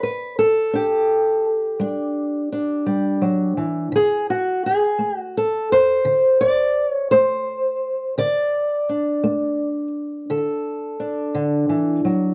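Set in a slow, straight 12/8 at 56 beats per minute, this short cut from a longer acoustic country blues piece moves at an easy, laid-back pace in D major with a gritty edge. A single fingerpicked acoustic guitar carries the whole 12.3 seconds alone, an old ladder-braced instrument whose boxy, woody tone and aged strings give it a dusky character. It sits up front in the mix, ranging from D3 to D5, with a slapback echo trailing its notes. The harmony moves from a G5 chord at the start to D5 at 3.9 seconds. A moderate small-room reverb and a dark, warm production frame the guitar in an intimate, close space.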